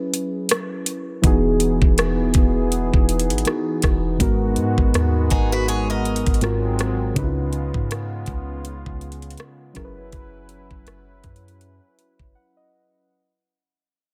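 Contemporary R&B at 81 BPM with a swung, late-night sensual feel, built on muted, felt-like synth keys with a dark chorus sheen up front, a trap kit of knocking kick, metallic hats and rim clicks, a deep, round 808-style bass, and a smooth, warbling vintage pad, while a bright, boxy picked acoustic guitar adds tape-echoed arpeggios from 5.3 to 6.4 seconds and the keys add a fill from 12.0 seconds as this dry, intimate fragment fades throughout.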